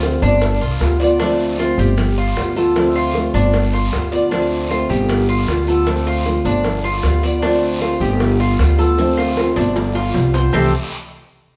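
A sunny Cuban son and guajira groove opens with a woody, thumpy pizzicato upright bass up front, a full-bodied fingerpicked steel-string guitar with finger squeak, and a metallic, double-strung tres playing arpeggios, alongside a raspy guiro and, in the background, tight high-tuned bongos and grainy maracas, all captured live in a large studio room as the chords rock between G7 and Dm7 until a drum fill from 9.0 seconds lands on C6 at 10.5 seconds in this short cut from a longer piece.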